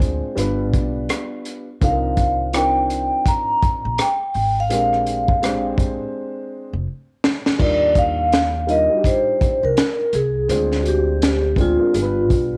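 A boxy, mellow dark grand piano, a woody, growly pizzicato upright bass with tube saturation and a gritty, punchy breakbeat kit with a high-tuned snare and dark cymbals open this smooth, swung jazz-hop excerpt in a small, lightly reverberant room. The piano and drums carry cassette-tape grit, and a ringing, metallic vibraphone with slow motor vibrato enters up front at 1.8 seconds. After a drum fill at 6.2 seconds, the vibraphone takes a solo from 7.6 seconds over the shifting seventh and extended chords.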